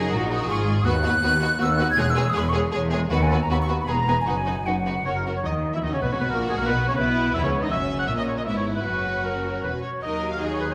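An airy, up-front flute section sounds from the outset of this graceful, lively classical-period orchestral movement in B major at a quick 158 BPM in 3/4, carrying a second line until 5.3 seconds while a mellow, distant solo oboe takes up its own second line from 5.1 seconds; beneath them a background violin section sings the vibrato-rich melody, second violins add a focused line, smooth violas accompany, and expressive cellos and close double basses anchor the bass, all set in a wet scoring-stage reverb.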